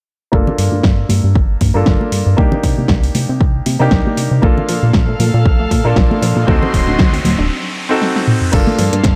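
Sleek and sensual, this nu-disco excerpt moves at 117 BPM in 4/4 with a light 16th-note swing, set in G minor over a Gm9, Cm9, Bbmaj7 and D7b9 progression. A punchy, overdriven electronic kick leads the mix, joined at 0.6 seconds by a pop drum kit with a fat snare, metallic hats, crash, toms and its own grit, while soft-handed congas and bongos sit in the background. A glossy, chorused synth bass pumps against the kick and carries a filter sweep, as does the clear concert grand piano, whose short-sustained accompaniment passes through a low-pass filter and analog delay. At 4.4 seconds a reedy studio string section with light vibrato arrives on sustained chords, alongside a warbling, detuned unison pluck playing background arpeggios colored by cassette tape and delay. An electronic riser climbs from 5.7 seconds into a break and a brief drum fill, all captured as a dry, gritty hardware recording with light reverb and digital ambience.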